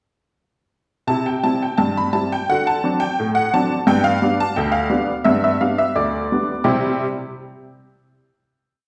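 Set in the wet, lingering reverb of a recital hall, this short, playful ragtime piece at 86 BPM in 2/4 features a solo honky-tonk upright piano, detuned, jangly and up front, playing a single-line melody over stride bass in C major from 1.1 seconds, moving through C, D7 and G before settling on a final C chord at 6.6 seconds.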